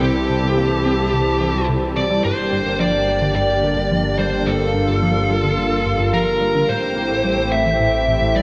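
A dark, fuzz-distorted lead guitar carries the melody up front from the first moment, its picked, compressed tone trailed by tape echo, while a bright, thick unison pad holds chorused chords beside it in this expansive, mysterious piece of sequencer-driven space music. Beneath them, a tight, mellow sequenced synth with a plucky filter and its own chorus and tape echo drives a riff in the background, and a fat analog bass with a filter sweep anchors the low end. A lush hall reverb washes over the sound as the harmony moves from C to Gm at 2.2 seconds and Am7 at 6.7 seconds, in a short passage cut from a longer piece.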